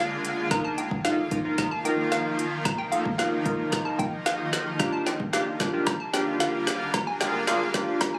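A straight 4/4 deep house kit, with a deep kick, woody snare and smooth hats, drives this bittersweet, confident dance-pop build-up, playing a fill from 0.2 seconds onward. A shimmering, ethereal pad with octave-up shimmer and its own reverb holds sustained chords, while a glossy, retro chorused polysynth joins at 0.5 seconds; both pump against the sidechain, and a hollow, bouncy square pluck with dub echo carries the melody over chords moving from Bb7 through Ebsus2 and Gm7. Captured on a phone amid club ambience, this cut from a longer piece sounds compressed and high-pass filtered, with light room reverb.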